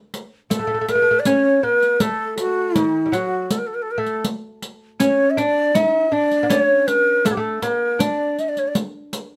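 A breathy, reedy ney carries the melody from 0.5 seconds, its soft-attacked, straight tone sitting up front in this passionate excerpt of Persian modal ensemble music in dastgah chahargah on D, moving at 80 BPM in a straight 3/4. Beneath it, a delicate, fingerpicked lute with bright nylon double strings plays a second line, while a riq with dark jingles, entering at 0.1 seconds, supplies the percussion. Light reverb and close, detailed microphones give the short passage a clear, present sound.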